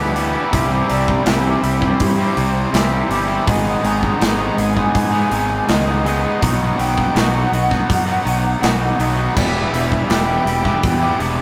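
Angsty and cathartic, this short cut from a longer quiet-loud alternative rock piece moves at 81 BPM in a straight 4/4, its harmony running from Em through C, G#m and B before returning to Em at 9.4 seconds. A bright, compressed distorted electric guitar drives the riff, doubled underneath by a very quiet, warm overdriven electric guitar. Low in the mix, a twangy, clean electric guitar picks arpeggios, while a dark, distorted bluesy lead guitar sings a melody in the background. A growly fuzz bass, fingered and overdriven, anchors the low end. A big acoustic rock kit joins at 0.2 seconds, up front with a punchy kick, medium-tuned snare and bright cymbals, and the whole take carries the rough, tube-saturated feel of a rehearsal room with a short, moderate small-room reverb.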